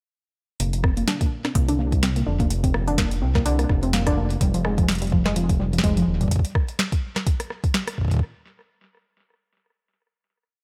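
A warbly, lo-fi pluck opens this short, eerie IDM piece at 0.6 seconds together with the bass and drum machine, spinning a five-step arpeggio loop that drifts against the bar, its detuned tone thickened by a sub octave, chorus and delay, with a filter sweep and quick, decaying notes. Beneath it, a dark, detuned saw bass rumbles and beats in the low register, sustaining long gliding notes with tube saturation and sitting up front. The groove runs at 126 BPM in 4/4 with a light swing on the sixteenths, in F dorian, moving from Bb over F to F minor. A booming analog drum machine supplies an ever-changing, glitched beat of metallic closed hats, rim clicks and a tonal snare, dry yet tape-tinged with studio reverb and tape echo, while a soft, up-front electronic kick drum plays a broken pattern. The pluck and bass stop at 6.3 seconds, leaving the drums to carry the glitchy pulse alone until the piece ends at 8.2 seconds, in a close, mostly dry mix.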